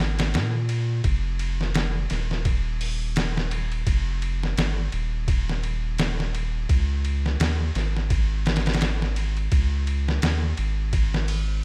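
This trip hop excerpt moves at 85 BPM in 4/4, its sixteenth notes swung at 57% to give a slow, loping sway. A sampler-style drum kit sits up front from 0.2 seconds, built from a thumpy kick, a medium-tuned snare, hi-hat and ride cymbal. Those drums sound compressed, pitched down and gritty, with a tape-warm grain. Alongside them, a soft dub sub bass, also up front, runs from 0.0 to 11.6 seconds, ranging from Eb1 to Bb2 with a deep, round tone that blends triangle and square waves, a fast attack and sustained notes. With little reverb, the dry sound gives the whole fragment a smoky, cinematic mood.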